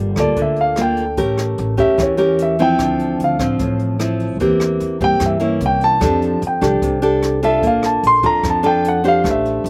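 Bossa nova at 149 BPM in a straight 4/4, romantic and relaxed, this short cut from a longer piece puts a fingerpicked, classical-toned nylon-string guitar up front over woody pizzicato upright bass, while a warm concert grand piano with deep low end enters at 0.2 s to carry a soloing melody and a brushed jazz kit adds hi-hat, rim click and a boomy kick, the mix sounding dry with little reverb as the chords move from Gm9 through A7b9 and Dm9 to F69 and Bbmaj7.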